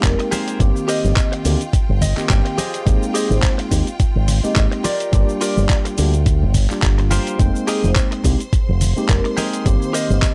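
This nu-disco excerpt opens on a thumpy, gritty electronic kick, a dusty sampler-style kit of handclaps, hi-hat and shaker, an up-front envelope-filtered fingered bass with tube saturation, and a bright tine electric piano pumping against the sidechain, moving at 106 BPM with a light sixteenth-note swing in F dorian through chords like Fm11, Abmaj7 and Gm7. A twangy, direct-recorded clean guitar riff with subtle chorus joins at 0.2 seconds and adds a fill around 1.7 seconds, while soft-hand congas, a mellow vibraphone melody with fast motor vibrato and analog delay, and lush, biting bowed strings sit in the background. The mood is cosmic and sensual, wrapped in digital ambience and a dry, gritty cassette-tape sound.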